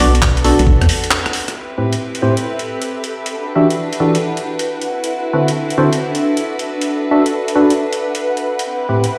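A swung two-step garage groove at 135 BPM in 4/4 drives this bouncy, moody cut from a longer piece in A dorian. Gritty, sampler-style breakbeat drums with handclaps, hi-hat and rim click run throughout, while a knocking electronic kick and a hollow, organ-like FM bass with tube saturation sound only briefly at the start before a break at 1.1 seconds, marked by a band accent. Up front, a dark, percussive organ stab with subtle chorus and tape echo carries the harmony through Bm7, Am9, Em7 and D13. Behind it, a distant, floating violin section holds soft sustained chords that pump with the sidechain. From 2.4 seconds an ethereal, airy pad joins, colored by ensemble chorus, phaser and its own reverb, and it pumps along with the strings. A moderate plate reverb and playback on a big sound system in a bare room give the whole a big-room sound.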